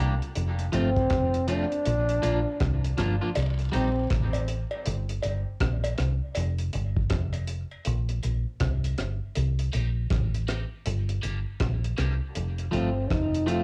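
This spacious, heavy dub reggae excerpt moves at 80 BPM in 4/4 with a swung sixteenth-note feel, set in C dorian over chords that pass from F and Bb through Cm, Gm, Fsus2 and Gmadd11. Up front, a deep fingered electric bass sounds round, punchy and foam-muted, while a dry, dark reggae drum kit with a tight kick, hi-hat and rim click sits beside it with a rolled-off top. A bright, twangy electric guitar at the edge of break-up supplies picked, compressed accompaniment through spring reverb, tape grit and dub echo. From 0.7 seconds a dark, soloing trombone carries the melody with vibrato and scooped notes, its smooth top also touched by dub echo. A break with a filter sweep begins at 3.4 seconds, where a cowbell and jawbone-type rattle enter in a small acoustic room, and the guitar returns at 9.7 seconds before the trombone reappears briefly near the close. The whole mix has the light reverb and homespun character of a cassette recording.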